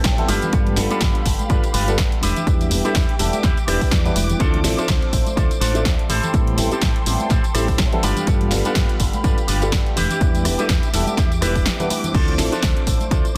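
Dense, heavily limited and lightly reverberant, this groovy, funky filtered disco house excerpt opens with a clean guitar fill in its first 0.5 seconds as it pumps its mellow, phased concert grand piano chords, veiled con sordino violin section, twangy envelope-filtered guitar riff and envelope-filtered fingered bass against a tape-colored electronic kick re-recorded in a large room, while a punchy analog drum machine adds its snare and rim click along with pumping hi-hat, tambourine and crash, joined by bright, pumping maracas and congas set in the background.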